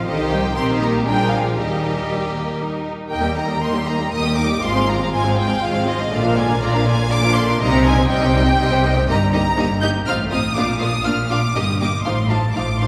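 In a quick, straight triple metre, this lively, spirited passage from a classical-period movement for string orchestra sets an up-front, close first violin section singing a smooth, high melody with vibrato over a rich second violin line, lush violas filling the accompaniment, focused cellos sitting in the background, and dark double basses with a soft attack and expressive portamento, all bowed and bathed in the long, wet reverb of a church or concert hall.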